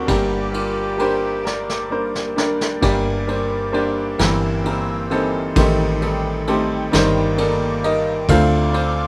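Melancholic and intimate, this slow acoustic folk-pop ballad in G minor sways in 6/8 at 44 BPM, with a bright, brilliant upright piano carrying the melody up front over soft felt-muted piano arpeggios, a hollow woody fretless bass, a swirling phased and chorused analog pad in the background, and a vintage brush kit with dark cymbals that plays a fill from 1.5 to 2.8 seconds, while a clear classical clarinet adds a brief second line until 2.4 seconds, all in light reverb as the chords move from Gm through C7/G, Am7b5 and Ebmaj7/G to Dm7 in this excerpt from a longer piece.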